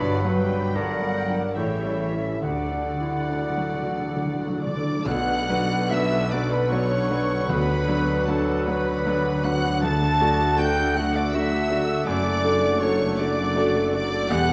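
Classical romantic piano-and-orchestra music in a lyrical, lush, rubato 3/4, where a clear, up-front concert grand carries the melody with muted, veiled violins and is shadowed by second lines from a pure, hollow flute, a clear, soft-attacked oboe and more con sordino violins, over a very quiet mellow bassoon, violas, French horn chords, a dark tuba, cellos and double basses, while hard-mallet timpani play from 2.4 to 10.9 seconds, distant trumpet stabs arrive at 4.6 seconds, and the harmony turns minor at 5.1 seconds in a moderate scoring-stage reverb.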